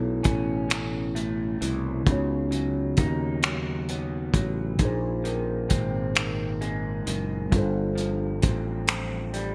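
Tender and intimate, this slow six-eight R&B fragment pairs a mellow tine electric piano with a growly, up-front fretless bass and a dark, slightly broken-up electric guitar through a small old amp with subtle chorus as the second line, while a cloth-damped, muffled drum kit of finger snaps, hi-hat and tight kick enters at 0.2 seconds with gated reverb, all set in a small room with bright 1980s-style digital sheen over drifting suspended ninth chords.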